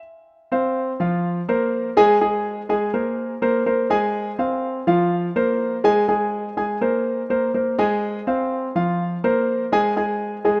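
A moderate plate reverb with a 2.8-second tail surrounds an up-front concert grand piano that has a warm tone, deep bass and short sustain. This Latin fragment in F minor moves at 124 BPM in a straight 4/4 with a danceable feel. The solo piano plays from 0.5 to 10.6 seconds between F3 and Ab5, cycling through Bbsus2, Abadd9 and Fm before the chords drop away at 10.0 seconds in this cut from a longer piece.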